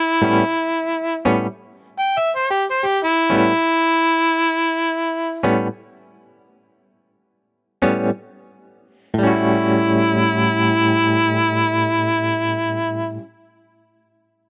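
A clear, overdriven harmonica leads this swaggering, gritty slow blues, playing a jazz-inflected solo up front with vibrato, tongue slaps and scooped notes between E4 and G5. The piece sits in A mixolydian in 12/8 with a straight feel, pulsing at 42-58 BPM counted in dotted quarters, and the pace slows down from 3.0 to 9.2 seconds. Beneath the harmonica, a bright, twangy clean electric guitar, recorded direct, adds picked and compressed accompaniment with tremolo from 0.2 seconds, ranging from A2 to F#4. The harmony rests on an A9 chord before moving to A6 at 9.2 seconds, where a new section begins. The sound is a dry, close 1970s-style studio recording with small room ambience, cut from a longer piece.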